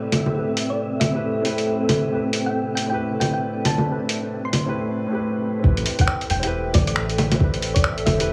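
A woody, intimate upright piano, roughened by 12-bit sampler grit, sidechain pumping and tape echo, sits up front in this rainy, melancholic, swung future garage excerpt over a blurred granular cloud pad carrying a filter sweep and a breathy wind-like noise texture, while a muffled lo-fi drum kit of bongos, finger snaps and hi-hat plays throughout, a tine-like, warbling thumb-piano-style pluck with chorus and digital delay carries the melody from 0.7 s, and at 5.6 s a deep, round 808 bass and an overdriven soft kick join.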